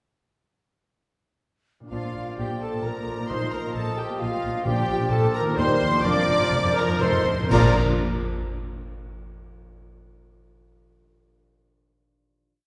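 A mellow concert harp opens at 1.8 s with ringing rolled chords before a full symphony orchestra joins in this short, spirited and graceful romantic piece in Bb major, a fast waltz-time movement at 120-133 BPM with a dramatic, rubato feel. Clear violins carry the lush, vibrato-rich melody, shadowed in unison by an airy, hollow flute and at the octave by dark, woody violins and violas and a very quiet vintage clarinet, while oboe and bassoon hold sustained chords, distant horns add short accented and sustained chords, rich cellos drive a bass ostinato and double basses double the bass line. Hard-mallet timpani enter at 3.3 s with rolls and single strokes, joined by cymbal swells, crashes and bass drum strokes, and a timpani fill leads to a final Bb chord at 7.5 s, all heard from further back in a reverberant concert hall.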